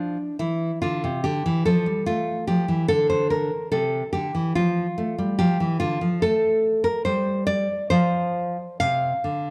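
A solo nylon-string guitar carries this brief classical fragment, fingerpicked and placed up front, with a bright, full-bodied tone from fresh strings and the occasional finger squeak. The piece is a baroque-style dance in 4/4 at 72 BPM, played with a rubato feel that gives it a solemn, flowing character. The guitar ranges from C3 to F5, moving from D minor into F major at 6.2 seconds, with a harmony of Dm giving way to F. Tuned to A4 = 441 Hz, the instrument sits in light reverb within a dark, warm production. The passage runs 9.5 seconds and is taken from a longer piece.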